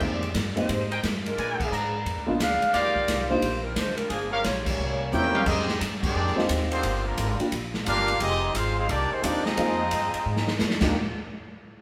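A wet, live-room sound with a big studio reverb frames this joyful, brassy big band swing excerpt at 176 BPM, as a mellow, distant saxophone section carries the melody over a dark, intimate baby grand piano with audible action noise, a woody, growly pizzicato upright bass and a punchy, up-front drum kit. A clear, vintage trumpet section adds stabs from 0.9 s, then a nasal, straight-muted trombone section takes a second line from 4.6 s and a soft-attack trumpet section with vibrato takes over the melody from 5.1 s. The band hits accents together at 1.5, 4.6 and 6.0 seconds, drum fills close each half, and the harmony moves through rich minor and extended chords such as Fm11, Bb7b9 and Ebmaj9.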